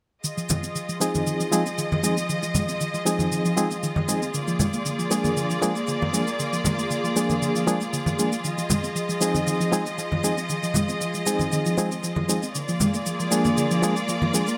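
A straight groove of a tape-warm electronic shaker and close, ringing maracas and congas carries this sensual, sleek nu-disco excerpt, where a lush bowed string section holds sustained chords over an Fm7 to Bb7 progression, a soft round pluck with chorus and delay spins dark arpeggios under a filter sweep, and from 1.0 s a barky, reedy electric piano with light overdrive and fast tremolo sits up front, all in a light studio reverb.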